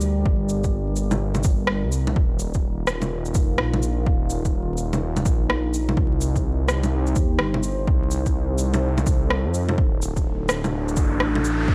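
Future garage at 126 BPM with a 63% swing on the sixteenths, rainy and wistful, as a deep, wave-folded pad with chorus and reverb sustains dark chords from Gm through Ebsus2 and Cm to D under a menacing, detuned sawtooth bass with a saturated filter swell, both pumping against a punchy, overdriven electronic kick that enters at 0.3 seconds over gritty, up-front shaker, bongos and rim click already running from the start, while vinyl crackle hangs over the mix and an electronic riser rises in at 10.3 seconds before this excerpt cuts off.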